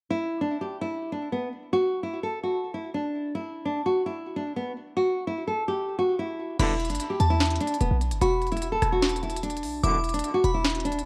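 A dark, menacing trap excerpt opens on a fingerpicked nylon-string guitar playing the melody alone, its classical tone sitting up front with finger squeaks audible and a digital delay trailing its notes. At 6.6 seconds the half-time groove arrives: a punchy, tight 808-style bass with a fast attack and decaying tail, and an electronic trap kit with a sharp snare, crisp hi-hats, rim clicks and a crash, re-recorded in a large room. A crystalline FM synth bell enters at the same moment with a second line high above the guitar, shimmering through chorus, phaser and delay with a long release. Short, close-miked brass ensemble stabs punctuate the passage twice, the second at 9.8 seconds, each echoed by delay. The whole recording carries a worn, warbling cassette character with drifting pitch and a light reverb.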